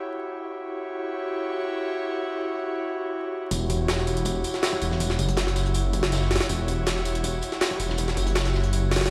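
An airy, breathy pad with chorus opens this dark, nostalgic drum and bass and jungle piece at 161 BPM in E dorian, holding a soft Em69 chord alone until 3.5 seconds. There a build-up begins as a filter sweep moves over the pad, a thick, menacing detuned saw bass with tube saturation arrives up front, and two kits enter together: a compressed, pitched-up sampler-style jungle kit with a thumpy kick and high-tuned snare sits forward, while a crunchy breakbeat kit with tambourine and a rolled-off top stays in the background. The whole is bathed in lush hall reverb and vinyl crackle, as if played on a big sound system in a bare room.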